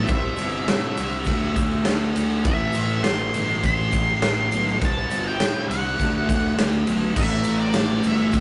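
A raw garage drum kit sits up front in this swaggering, menacing garage rock excerpt, its punchy kick, medium-tuned snare, crash and ride cymbals pumping in a bright stone room with a saturated, gritty, rolled-off top. At 102 BPM in straight 4/4 and A dorian, a double-tracked, compressed fuzz guitar plays a distorted riff between A2 and D4 from the very start alongside the lead guitar and bass, joined by the drums and shaker at 0.1 s. Above it, an octave-fuzz lead guitar carries the melody from D5 to C6 with a dark, picked tone. A growly, overdriven fingered electric bass, bright and heard both direct and amped, holds the low end from G1 to A2, while a grainy egg shaker sits very quietly in a small room. The harmony moves through C, D5, Am, C5, D and A5, and the whole take has the rough feel of a rehearsal-room recording with tube saturation and moderate reverb.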